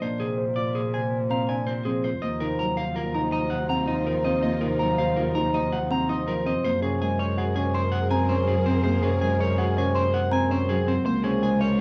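From the first beat, a slightly broken-up electric guitar picks out a scooped melody over a ringing fingerpicked Celtic harp, intimate grand piano arpeggios with audible action noise, and an up-front bowed cello bass with vibrato and portamento, joined at 1.3 seconds by mellow, woody xylophone arpeggios and at 2.2 seconds by a lush, dark string section holding background chords, in a hypnotic, urgent minimalist classical pattern piece in Eb dorian at 163 BPM in 6/4, cut from a longer work and framed by light reverb and a dark production.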